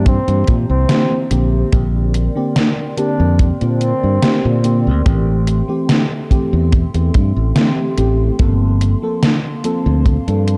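Hazy and nostalgic, this short vaporwave fragment moves at an unhurried straight pulse in 4/4 over chords of C7, Bb69, Am7 and Gm11, with a mellow, distant flugelhorn carrying the melody until 4.8 seconds through a tape echo. A soft, round FM electric piano with analog chorus and delay supplies the accompaniment, while a warbling, detuned lo-fi pad with phaser sits in the background under light room ambience. Up front, a growly, bright fingered electric bass sits alongside a tight acoustic kick and an overdriven, sampler-style 80s drum machine whose hi-hat and gated-reverb snare complete the dark production.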